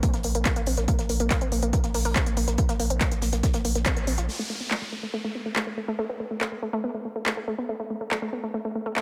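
A straight 4/4 pulse at 141 BPM drives this dark, hypnotic peak-time techno excerpt: a punchy, tape-warm analog kick, thick saturated sub bass holding Bb1 and a dry, dull-topped 70s kit with a fat snare in the background all share the opening, while an up-front layered machine kit of handclaps and smooth, pumping hats runs throughout. Over this a round, nasal, wave-folded analog pluck plays a chorused riff with digital delay and sidechain pumping, all set in a lush hall reverb. The kick drops out at a band accent at 3.9 seconds, and the bass and acoustic kit follow at 4.3 seconds, when a downlifter effect enters alongside the claps, hats and pluck as a filter sweep moves over the synth.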